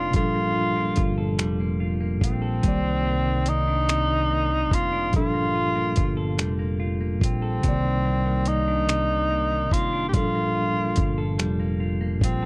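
Slow six-eight R&B at 48 BPM in C dorian, yearning and sultry, where an up-front tenor saxophone with light vibrato sings a vintage jazz-style melody over a bright, twangy clean electric guitar second line, mellow tine electric piano chords moving between Gm9 and Cm9, growly, punchy fingered electric bass, and a gritty sampler-style soul drum kit of finger snaps, hi-hat and thumpy kick, heard in a dry, close 1970s-style studio recording.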